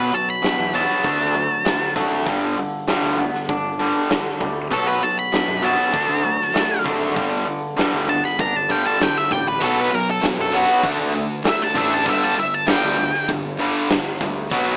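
A dark, fuzzy octave lead guitar carries the melody up front from the first moment of this brooding alternative rock excerpt, over a bright, overdriven rhythm riff, clean, compressed hollow-body arpeggios in the background, a growling overdriven bass and a big arena drum kit with a punchy kick. The harmony cycles through B5, D and G in a straight four-beat pulse. At 9.6 seconds the arpeggios stop and a heavy high-gain guitar riff takes their place in the background, all heard through a dry AM-radio tone.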